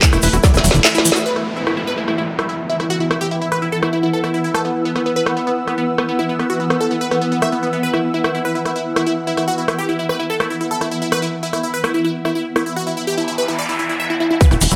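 A bright, detuned supersaw stab carries the phased, dub-echoed melody up front over a swarming granular drone that sweeps its filter from 1.3 s and a layered drum-and-bass kit with woody snare and metallic hats. A punchy electronic kick, a ring-modulated sequencer bass, a grainy tube shaker and a squelchy, distorted acid bass riff appear only in the opening second and return near the end. An ethereal, chorused pad drifts in at 2.5 s, and a downlifter and noise sweep add electronic rushes, while the stab, drone, pad and acid bass pump with sidechain in this intense, psychedelic trance excerpt.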